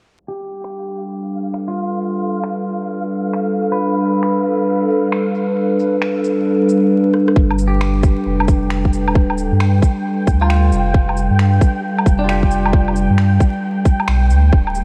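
Rainy and nocturnal, this future garage excerpt moves at 134 BPM in 4/4 with a swung sixteenth-note feel, its dreamy mix soaked in cathedral-like reverb, dusted with vinyl crackle and dulled by a low-pass filter. A warbling, detuned pad holds dark, nostalgic chords up front, thickened by chorus and pulsing under sidechain pumping, while a flickering, grainy texture hovers high above. A bright, twangy clean electric guitar picks accompaniment through a filter sweep in the opening half, roughened by 12-bit sampler grit and trailed by tape echo, and returns from 7.7 to 12.9 seconds. Overdriven electronic shaker, finger snaps, rim click and woodblock tick along from the start, and a drum fill at 7.1 seconds leads into the second half. At 7.4 seconds a tight, layered electronic kick and a round, deep sine sub bass arrive up front, giving the track its weight.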